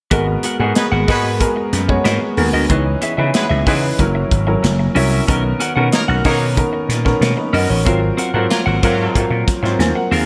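Slick and bittersweet, this short cut of polished 1980s jazz-funk pop moves at 93 BPM in a straight 4/4, set in G# minor with lush extended harmony that travels from G#m9 through C#m9, F#7 and Bmaj9 before landing on G#13. A warm concert grand piano sits up front with deep bass and a lush chorus, carrying the accompaniment, while a dark, clean, compressed electric guitar plays a picked riff touched with subtle chorus. Underneath, a growly, amped slap bass gives the groove its bright punch, and a modern acoustic drum kit drives hi-hat, punchy kick and a medium-tuned snare through gated reverb and a pumping room sound. A clear horn section enters at 0.8 seconds as a second line, sounding distant and roomy with light vibrato and octave doubling, and drops out at 9.2 seconds. The whole mix carries a bright digital sheen typical of 1980s studio production, finished with light studio reverb.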